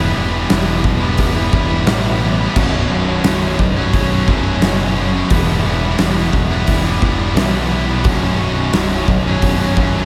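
A straight 4/4 pulse at 87 BPM drives this short, dark and angsty cut of quiet-loud alternative rock, tuned slightly flat to A4 = 439 Hz. A huge acoustic drum kit enters at 0.5 seconds with a punchy kick, a fat snare, hi-hat and crash cymbal ringing in a big room. Two distorted, picked electric guitars play the riff from the start: one bright, scooped and high-gain, the other a thick, warm fuzz, both carrying slapback echo. Beneath them, a growling picked electric bass, direct and amped with overdrive, holds down the low end. The harmony rocks between Em and Bsus2 across the whole passage, and light reverb with small room ambience sits around the heavy, brooding wall of sound.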